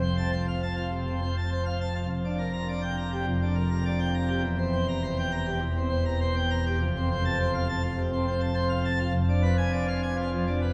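A pipe organ on full plenum, its mixtures bright and brilliant with audible chiff and a baroque voicing, carries this majestic, jubilant classical toccata alone, spanning E1 to Bb5 and sitting up front against a lingering cathedral reverb of 5.2 seconds. At 102 BPM in a straight 4/4 and F major, tuned to A4 = 441 Hz, the harmony moves from F through Gm7/F and C7/E back to F before turning to Fdim7 at 9.2 seconds. The 10.7-second fragment is cut from a longer piece.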